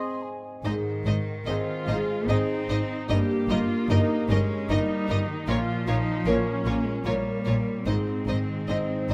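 A mellow, hollow flute sounds for only 0.7 seconds over clear concert grand piano, ringing harp arpeggios and a background violin section before a solo cello with vibrato takes the tender, hopeful melody alongside a focused violin section from 0.6 seconds, with lush double basses, cello section bass and a smooth viola section joining by 1.5 seconds in this cinematic, rubato 3/4 piece in Ab major at 74 BPM, cut from a longer piece and heard through close, detailed microphones with light reverb.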